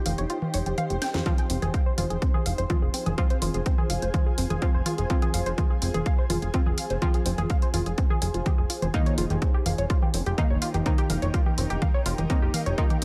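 A punchy, overdriven electronic kick sits up front in this dark, dramatic melodic techno passage cut from a longer piece, arriving at 1.3 s just after a drum fill at 1.0 s. Alongside it, a funky, plucky analog bass blends sawtooth, pulse and triangle tones with ring modulation and a fast filter pluck, pumping under sidechain compression, while a house kit of congas, hi-hat and a cracking snare carries its own overdrive and the sound of being re-recorded in a large room. Tight, driving synth arpeggios built from detuned sawtooth and square waves move through chorus, vintage 12-bit sampler grit and dub echo. A brassy stab sits in the background with chorus and echo of its own, and a blurred, evolving granular pad with a slow attack and built-in reverb hangs bright and cloudy overhead. The harmony shifts from Eb over F to F minor and back again, all set in a light digital ambience.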